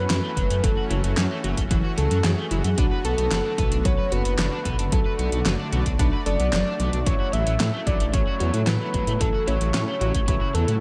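Nocturnal and nostalgic, this synthwave excerpt moves at 112 BPM in F# minor, drifting from F#m7 to Bm7 at 2.8 seconds and settling on F#m7/A at 7.1 seconds. A round, mellow octave-layered synth lead carries the melody with chorus, vibrato and tape echo over a smooth, evolving supersaw pad and a lush unison pluck spinning arpeggios in the background, while a crunchy, double-tracked overdriven guitar picks out a riff. Underneath, a deep, rumbling detuned saw bass sits up front, pumping with the sidechain alongside the supersaw, and a punchy electronic kick joins at 0.4 seconds beside a pop kit of handclaps, metallic hi-hats and a fat snare dressed in gated reverb, all in a dry, dark-toned mix.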